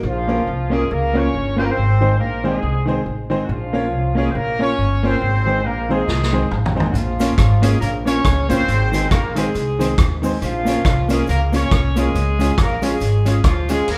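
A lightly swung 4/4 ska groove at 139 BPM drives this mischievous, energetic excerpt from a longer piece, with a woody, thumpy pizzicato upright bass up front, a clear vintage horn section carrying the octave-doubled melody with vibrato, a bright, brilliant upright piano adding stabs and a dark, clean semi-hollow electric guitar comping in the background over a Bbm and Ab vamp that closes on Db, until a gritty, saturated vintage drum kit with dark cymbals and a tight kick bursts in with a fill at 6.1 seconds and a very quiet, grainy cabasa joins at 7.0 seconds, all sounding like a band playing live together in a large studio with moderate reverb.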